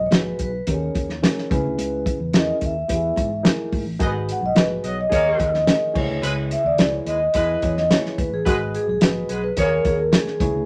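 A mellow, ringing vibraphone played with soft mallets carries the melody in this driving, passionate excerpt of uptempo 1960s-style soul at 108 BPM in G# minor, its slow motor vibrato floating over a reedy, clean electric piano, an amped fingered electric bass and an up-front drum kit with a fat snare, tight kick and dark cymbals, while very quiet, bright congas sit close and dry beneath. From 4.0 seconds the vibraphone takes a solo as a punchy, distant horn section adds a loose, roomy second line until 10.0 seconds, over a cycle of G#m7, D#7sus4, C#m7 and Emaj7 in a moderate studio reverb.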